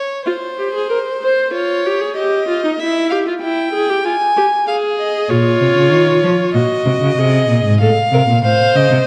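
The cello stands out most, entering at 5.3 seconds with a focused, vibrato-laden bass line held close and up front in the low register. This is a short portion of a solemn, contemplative baroque-style fugue for string quartet, moving at 95 BPM in a straight 4/4 and tuned slightly above standard pitch. A single violin carries the second line from the opening with a rich, expressive tone, sliding between notes with portamento and vibrato in its upper-middle range. A dark viola joins at 0.3 seconds as accompaniment, its soft attack, vibrato and portamento giving the inner voice an intimate, close presence. The harmony passes through F minor, Eb9 and E minor, then a brief chordless moment before Bb minor and C diminished settle onto F major. A hall reverb with a long tail and a dusky, warm production wrap the three solo players in a spacious, sombre glow until the passage breaks off at 9.1 seconds.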